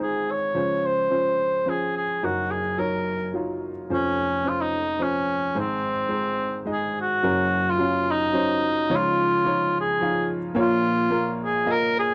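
Nostalgic and tender, this short cut from an acoustic folk-pop ballad moves at 108 BPM in a straight 3/4 in Db major, with a cor anglais singing the melody in a distant, roomy, classical-style solo voice that sits up front. An upright piano accompanies throughout, woody and intimate with audible action noise, its polished, present tone carrying chords such as Dbmaj7 and Gb6 before the harmony turns to Gb at 7.2 seconds, passes through Dbadd9 and settles on Bbm. The sound is a dry, close, 1970s-style studio recording in a small room.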